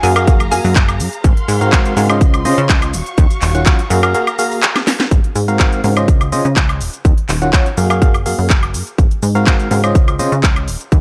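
Feel-good and joyful, this piano house cut opens with a biting, barking FM electric piano riff up front, bolstered by a punchy, funky analog bass and a layered house kit of cracking snare, crisp hats, handclaps, shaker and woodblock, with a punchy electronic kick joining at 0.3 s. A hollow, bouncy square pluck flickers briefly in the background with chorus and delay, while a dark, lush symphonic string section sustains bowed chords until 5.1 s, pumping under the sidechain along with the piano and bass. A short break and drum fill lead into the second section at 5.1 s, and the whole mix carries a dry, gritty cassette-tape character with light reverb.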